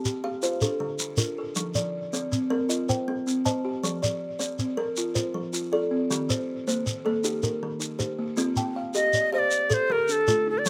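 Close, nearly reverb-free outdoor sound frames this hypnotic, trance-like cut from a longer southern African traditional piece, an mbira-style interlocking cycle in C dorian at 106 BPM in a straight 12/8. Two kalimbas weave arpeggios throughout with slapback echo, one hollow and airy, the other a buzzing, band-limited board with a vintage character, while a grainy, mellow shekere sits up front as the chords move through Dm, F, Cm and Eb. At 9.0 seconds a bright, tongued Native American-style cedar flute enters with vibrato and its own slapback echo to carry the melody.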